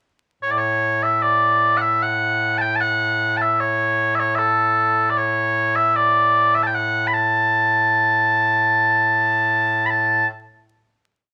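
Stirring and ceremonial, this short Scottish traditional pipe piece moves in a steady three-beat metre as a solo set of small bagpipes carries a modal, ornamented melody, its mellow, sweet tone sounding continuously and up front. The pipes play from 0.4 to 10.3 seconds, settling into a final note that hangs in a moderate club reverb. A vinyl crackle lends the recording an aged patina.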